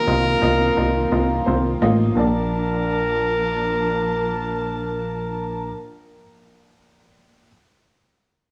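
A bright, close-miked solo trumpet holds Bb4 over an uplifting, warm 86 BPM pop cut in Bb major, backed by a woody, slightly detuned upright piano, lush bowed strings with vibrato, and a punchy, funky sawtooth analog bass with a plucky filter; the trumpet, piano and strings carry a cassette-tape tinge, and everything sits in small-room ambience with light reverb, moving from F7sus4/C to Bbmaj7 at 2.2 seconds before the piano rings on alone from 5.7 to 7.5 seconds.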